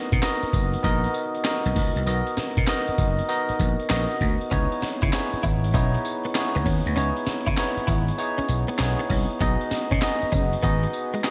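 A bell-like tine electric piano, lush with chorus, opens this bouncy, punchy new jack swing excerpt at 98 BPM, joined almost at once by a growly, amped slap bass and a gritty, compressed breakbeat sampler-style kit with a thumpy kick, high-tuned snare, handclaps, hi-hat and tambourine, while a clean, picked electric guitar with ensemble chorus slips into the background riff at 4.5 seconds as the chords move from Bmaj7 to C#m9 and B6, all set in a bright 1980s-style digital production with a lush hall reverb.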